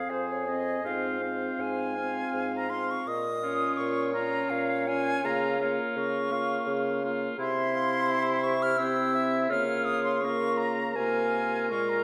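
Elegiac and yearning, this slow, rubato romantic movement for wind quintet in F minor sways in 3/4 at 83 BPM, with a pure, up-front silver concert flute singing the melody with vibrato and a soft attack over a mellow, distant oboe second line, a clear French horn and a roomy, warm clarinet filling the accompaniment, and a dark bassoon bass entering at 0.1 s, all set in a wet scoring-stage reverb as the harmony moves through Bbm and C before resting on Db6 in this piece cut from a longer work.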